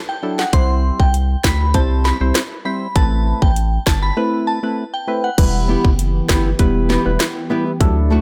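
A dry excerpt of sultry, tough dancehall, where an up-front island pop drum kit with a tight kick, sharp snare and metallic hats and a deep, thick saturated sub bass anchor hollow, percussive organ stabs and a crystalline, warbling synth bell melody shimmering with chorus and phaser, before a break at 4.2 seconds gives way at 5.4 seconds to a smooth analog pad pumping in the background and, from 5.7 seconds, dark fingerpicked nylon-string guitar arpeggios trailing delay.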